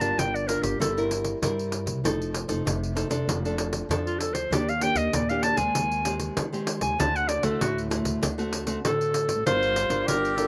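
A straight 4/4 samba-and-choro groove at 97 BPM in G minor is driven by a jingly, hard-handed pandeiro up front and a woody, thumpy pizzicato upright bass on gut strings. A clear, punchy clarinet carries a forceful, jazz-style solo with light vibrato over bright, fingerpicked nylon-string guitar, both touched by slapback echo, as the chords move from Gm7 through Ebmaj7 to D7 and back to Gm7. At 9.5 seconds a breathy, close-miked tenor saxophone takes up a subtoned second line, giving this yearning yet lively passage, recorded dry in the open air and cut from a longer piece, a fresh voice.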